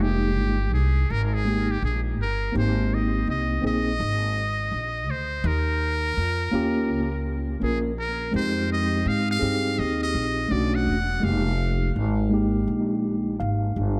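A swung sixteenth-note groove in 4/4 sets a cool, smoky jazz-hop mood in this hip hop fragment cut from a longer piece. The upright bass sits up front with a woody, growly pizzicato tone on steel strings, anchoring the low end throughout. A mellow tine electric piano supplies clean accompaniment, sounding through its built-in speakers with an analog delay trailing its chords. A trumpet with a metal mute carries the melody, opening with a solo passage in the first 2.5 seconds; its brilliant, buzzy, thin tone and light vibrato bring a jazz feel, also colored by analog delay, before it drops out at 12.0 seconds. The harmony moves from Fm11 through Abmaj9, Eb9 and Fm9, with a brief Bm9 before settling back on Fm11, all within light reverb in an echo-heavy mix.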